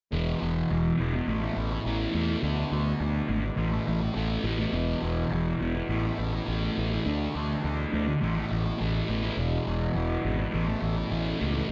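A thick, double-tracked fuzz guitar riff sits up front with distortion and a phaser, shifting between E, A and D power chords, over a round, overdriven fingered fuzz bass and the reedy, breathing drone of a hand-pumped harmonium, giving this hazy, trippy rock fragment a dark weight under light reverb.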